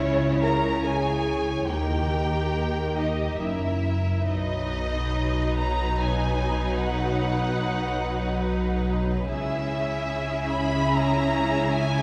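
A cinematic, longing passage in a rubato 3/4 at 72 BPM opens with a lush bowed string orchestra: a smooth, distant violin section carries the melody over a clear, focused second violin line, while rich violas, background cellos and up-front double basses fill out the accompaniment and bass. A very quiet, hollow and airy flute section plays a second line and close-miked, tight French horns hold sustained chords, the horns dropping out at 3.9 s and the flutes at 4.3 s, when the music settles into B major. From there the strings alone carry the moving phrase, sounding from further back in a wet, spacious scoring-stage reverb.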